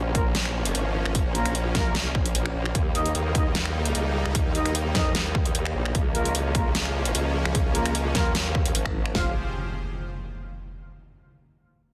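A lush, detuned supersaw pad pumping against a saturated, chorused formant-sweep wobble bass opens this heavy, chaotic half-time dubstep passage at 150 BPM, soon joined by dark, loose classical-style brass stabs with a filter sweep and dub echo, punchy kick and huge, softly clipped snare with finger snaps and metallic hi-hats from a tape-colored electronic kit, all moving over Bbm, Eb and Bbm/Db in a dense, heavily limited mix before an up-front impact lands at 9.1 seconds on an F5 chord.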